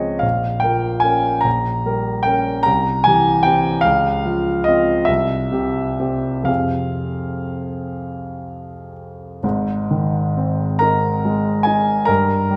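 Yearning and wistful, this short passage from a longer romantic nocturne moves at a slow, rubato 12/8 pace of 39-52 BPM, with a solo baby grand piano in F minor passing through chords such as Bbm, Dbmaj7 and C before turning to Ab major at 9.4 s. The piano sounds warm, polished and up front, and its long sustain carries into a recital hall reverb that lingers for 1.7 s.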